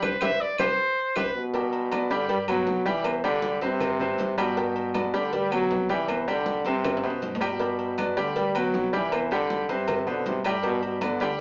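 A punchy trombone with light vibrato carries the melody from 1.4 s in this sunny, danceable salsa excerpt at 158 BPM in G major, taking over from a warm, roomy trumpet solo that opens over a band accent and a short drum fill. A brilliant, polished grand piano sits up front beside it. A woody pizzicato upright bass, a round, very quiet cowbell, and ringing congas, metal-shelled timbales and agogo bells, and claves in the background keep the groove going, with a second drum fill at 6.8 s. The band sounds as if it is playing live together in one small, reverberant room, heard through a small speaker.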